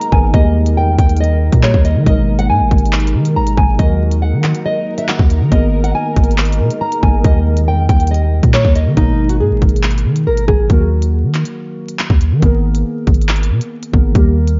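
Vinyl crackle, light digital reverb and a muffled, rolled-off top end frame this menacing, ominous half-time drill excerpt at 139 BPM in G# minor, where a classical nylon-string guitar carries the thumb-plucked melody, complete with finger squeak and lush chorus and delay, until 10.7 seconds. Warbly, nostalgic lo-fi synth keys supply accompaniment throughout, while a deep, detuned ambient pad holds slow-attack sustained chords until 9.0 seconds. Up front, a tape-warm drum kit of hard-clipped kick, crisp hi-hats and handclaps sits over a long, mellow sine 808 bass as the harmony cycles between G#madd9 and D# and D#m chords.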